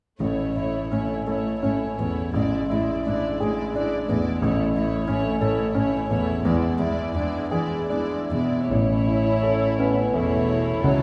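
Classical in a rubato 3/4 at 70-93 BPM in A major, this lush, lyrical passage sets a clear, up-front grand piano melody, shared with an intimate chamber violin section, over dark woody violas and floating cellos, all bowed sul tasto, until at 8.7 s a distant, pure second violin line, a mellow solo bassoon with vibrato and soft background double basses join, all heard from further back in a reverberant scoring stage.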